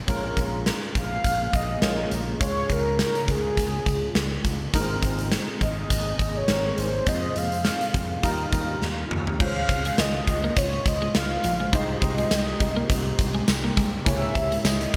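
A bright 1980s-style digital production sits in a lush hall reverb, carrying a nostalgic, romantic slice of pop at 103 BPM with a lightly swung 16th feel. A huge arena drum kit punches up front with bright cymbals and a pumping room sound, a punchy slap bass with an envelope filter drives the low end, and a concert grand piano with audible action noise and long sustain accompanies through an ensemble chorus over a very quiet, dark, shimmering pad that enters at 0.9 seconds. A round, horn-like sawtooth synth lead carries the melody with vibrato, chorus and digital delay from 1.0 seconds, and after a drum fill a clean, twangy twelve-string electric guitar adds a chorused, delayed riff in the background from 9.6 seconds.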